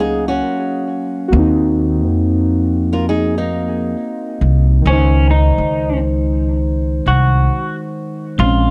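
A woody, up-front pizzicato upright bass anchors this reflective, nostalgic lo-fi hip hop excerpt at 68 BPM in 4/4, with a swung 16th-note feel over Ebm9, a rootless Ab13 and Dbsus2 chords. Muted, felt-like synth keys, soft and intimate with a warbling cassette-tape character and chorus, sit close throughout, while a fingerpicked flamenco guitar with fresh strings and analog delay plays a second line until 4.7 seconds. At 4.9 seconds an electric guitar through a small old amp takes the melody, slightly broken-up and compressed, all set in light reverb within a dark, warm production.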